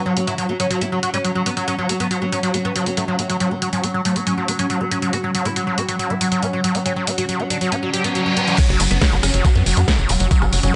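Psychedelic trance at 139 BPM, hypnotic and intense, in this brief excerpt an up-front, woody oud melody with phaser and digital delay sits over a squelchy, screaming acid riff whose filter sweeps until 8.6 seconds, alongside a very quiet evolving wavetable pad, a blurred granular cloud pad in the background, and a techno kit of cracking snare, hats and rim clicks re-recorded in a large room. A reverse cymbal and downlifter sound from 7.9 seconds into the drop at 8.6 seconds, where an overdriven, knocking kick, a jingly, close tambourine and a tight, dark sequencer bass with a punchy filter pluck join in. The oud, acid line and granular pad carry sidechain pumping, under light reverb.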